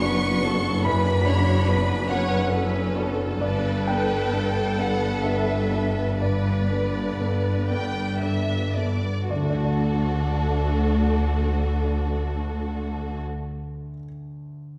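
Hopeful and uplifting, this cinematic passage from a longer piece unfolds in a rubato 6/8 that gradually slows through its opening stretch. A lush violin section carries the melody with expressive vibrato and soft attacks, while a second, more distant violin section sings a higher line above it. A clear, intimate grand piano provides accompaniment with long sustain and audible action noise, joined by a close viola section. Cello and double bass sections sit in the background, the cellos adding portamento. The harmony moves from Bm/F# to Gadd9 before settling on D. The strings stop at 13.2 seconds, leaving the piano alone until 14.8 seconds, heard in the reverberant space of a church or concert hall.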